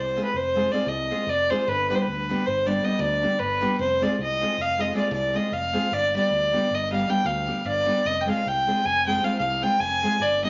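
Balkan folk in a restless, fiery 11/8 at 310 BPM in eighths, set in F dorian sharp4 over alternating Fm and G chords, this fragment of a longer piece puts a single reedy, airy-bowed fiddle with gut-string tone up front on the melody, while a full-bodied, fingerpicked nylon-string guitar of deep classical character joins at 0.2 s and a direct, bright fingered electric bass holds the low end beneath, all bathed in a large studio reverb with vinyl crackle and a dulled top.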